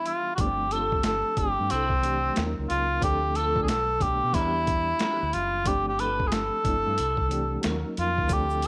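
A warm, up-front cor anglais sings a vibrato-laden solo melody over a reedy, slightly out-of-tune electric piano with tremolo, gritty pitched-down boom bap drums with a thumpy kick and high-tuned snare, a round, punchy dub bass, a clean picked guitar with chorus in the background, and a close, dry tube shaker that slips in at 8.3 seconds, giving this excerpt of introspective neo-soul a late-night, lightly reverberant glow over lush chords like G9sus4 and C69.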